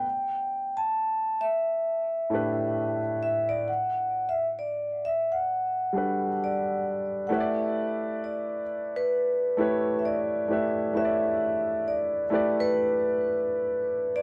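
Soulful and unhurried, this slow R&B fragment swings gently on the sixteenths. A vibraphone played with medium mallets and its motor off carries the melody throughout, its metallic, ringing tone sitting up front in a boxy small room, while a baby grand piano with a natural, long-sustaining sound supplies accompaniment beside it. The harmony moves from A9sus4 to Gmaj9 and returns to A9sus4 at 7.3 seconds as a second section begins, all wrapped in light reverb and a dark, warm production.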